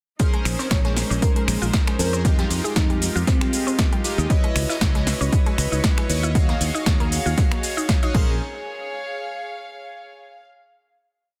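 A moody deep house drop at 117 BPM opens at 0.2 seconds with a punchy, overdriven four-on-the-floor kick, metallic programmed hats, snaps and a backbeat snare, faint roomy brush breakbeats, and glossy chorused polysynth stabs pumping through Bbm9, Fm9, Dbm9 and Ebm9. A woody mallet-like pluck arpeggio loop drifting against the bar enters at 0.3 seconds, a bright growly syncopated bass riff at 0.5 seconds, and sparkling bell-like electric piano phrases sit in the background from 0.7 until 4.0 seconds. A shimmering string machine holds a high note from 4.3 seconds, and floating bowed chamber strings linger alone on a final Db/Ab until 10.4 seconds.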